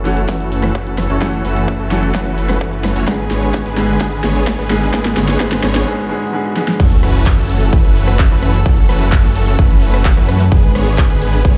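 A punchy, overdriven electronic kick sits up front in this anthemic, powerful festival progressive house clip at 129 BPM in F# minor. It is joined by a layered big-room kit with a huge snare, handclaps, hi-hat, rim click, shaker and crash, all overdriven and set in a small room ambience. Alongside them, a thick, menacing detuned saw bass and lush supersaw chords pump under sidechain compression, with the supersaws filtered and echoed by delay. A brilliant, polished grand piano with delay and a bowed chamber string section with light vibrato and an earthy tone pump in the background. The passage cycles between F#m7 and G#dim, building with drum fills and a filter sweep on the supersaws while a very quiet riser, swell and sub drop enter from 3.2 seconds. After a brief break at 5.9 seconds, the drop lands with an impact at 6.8 seconds, where the piano stops and the beat, bass, strings and supersaws carry on to the end of the cut.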